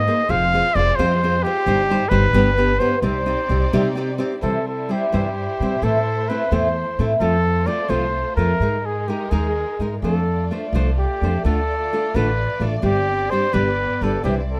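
A mellow trumpet sings a smooth-topped, classical-style melody with light vibrato over softer, expressive bowed violin-section chords and a woody, thumpy pizzicato upright bass, joined at 0.1 s by a bright, fingerpicked nylon-string guitar, in this proud, festive mariachi passage in a rubato 6/8 at 86 BPM that turns from C minor to C major at 4.4 s, captured with close, detailed microphones and light reverb.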